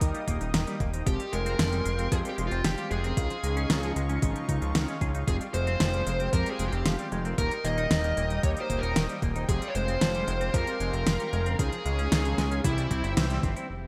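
Nostalgic and driving, this synthwave excerpt rides a thick, up-front analog bass and a layered pop drum kit with a fat snare, crisp low-passed hats and gated reverb, joined by a thumpy, overdriven electronic kick. A detuned, slow-attack analog pad with sidechain pumping, round background stabs of mellow synth brass and a clean semi-hollow electric guitar arpeggiating through lush chorus and delay fill out the bright 1980s-style production, set in a moderate hall reverb. From 1.1 seconds a dark, picked lead guitar with overdrive and delay carries a smooth melody over chords centred on Fmadd9 and Dbadd9, and the band hits an accent at 13.2 seconds.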